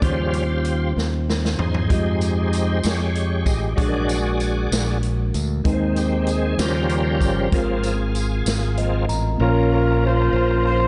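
This soulful, hopeful slow gospel passage in a straight 6/8 feel, cut from a longer piece, opens with a shouting, lightly overdriven tonewheel organ taking a solo over sustained chords, its fast rotary speaker and chorus vibrato giving it a full, bright character. Beneath it, a clean tine electric piano comps warmly in the background, a fingered electric bass sits punchy and up front, and a natural-sounding swinging big-band drum kit plays with a medium-tuned snare and punchy kick, adding a short fill early on. A jingly tambourine joins at 2.2 seconds, and the electric piano slips in a fill at 8.5 seconds as the organ solo closes. At 9.4 seconds a tight jazz-style horn section takes over the melody, mellow with a smooth top and light vibrato. The harmony moves through rich extended and altered chords before settling on a minor chord, all heard in a small room with light reverb.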